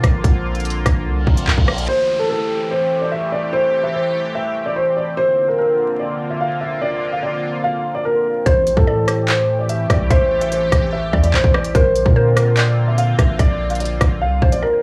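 This ominous, cold drill cut opens with a half-time groove at 146 BPM in A phrygian: an electronic kit with a hard-clipped kick, crisp hats, handclaps and rim clicks sits up front over a deep, sine-toned 808-style bass and a sweeping, resonant pad of detuned sawtooth layers with chorus. A reverse cymbal and downlifter sweep in quietly under the opening bars, and at 1.9 seconds the drums and bass drop away as a dark, intimate grand piano takes the melody, its action noise audible and its vintage tone trailed by tape echo. For several bars the piano and the evolving, bright pad carry the harmony, moving between Bbadd9 and Am7. At 8.5 seconds the kit and bass return, joined in the background by a woody, warbling FM mallet pluck with chorus and tape echo playing a second line. The mix is dry and gritty with vinyl crackle and only a small room around it, and the excerpt is cut from a longer piece.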